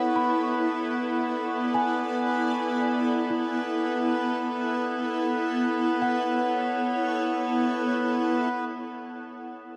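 Melancholic and reflective, this ambient passage, cut from a longer piece, drifts in a huge, wet reverberant space. Up front, a granular cloud pad holds sustained chords that feel cloudy, evolving and blurred, its full-bodied sine tone rising with a slow attack and fading on a long release through its own built-in reverb. Beside it, a hand-pumped harmonium holds a reedy, breathing drone, mellow in character, until it falls away at 8.6 seconds. Further back, a celesta plays delicate, bell-like arpeggios whose sweet, close-miked tone carries a diffuse ambient delay. The harmony moves from Bmadd9 to A/B at 4.3 seconds, then settles on Bm at 8.5 seconds as the music shifts into a brief second section, where the harmonium soon drops out beneath the pad and celesta.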